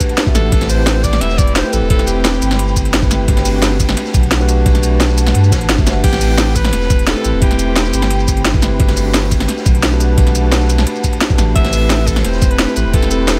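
A small room ambience surrounds this dreamy, uplifting liquid drum and bass excerpt, cut from a longer piece. An up-front electronic kit drives the groove with a cracking snare, crisp hats, crash cymbal and shaker, joined by a thumpy, gritty sampler-style kick re-recorded in a large room. Behind them sits a dark, saturated acoustic breakbeat kit with filtered hi-hat, ride and snare. A deep, round sine sub bass holds the low end while a mellow tine electric piano, played through built-in speakers with tape echo, accompanies on Gmaj9 and Am9 chords beneath an ethereal, detuned pad with ensemble chorus, reverb and sidechain pumping. An edgy alto saxophone with light vibrato and scooped notes plays short solo phrases through tape echo, entering at 0.3, 6.0 and 11.6 seconds.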